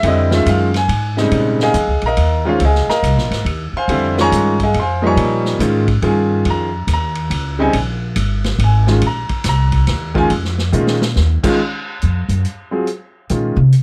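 A woody, thumpy pizzicato upright bass sits up front in this hypnotic, searching modal jazz excerpt in Bb dorian, a swung 3/4 at 140 BPM, and it takes a solo from 11.6 s. A clear, intimate baby grand piano accompanies with audible action noise, moving through Fm7, Bbm11 and Ebm7, while a vintage drum kit with dark cymbals, a punchy kick and a rolled-off top plays a fill at 10.7 s. A moderate small-room reverb surrounds the trio.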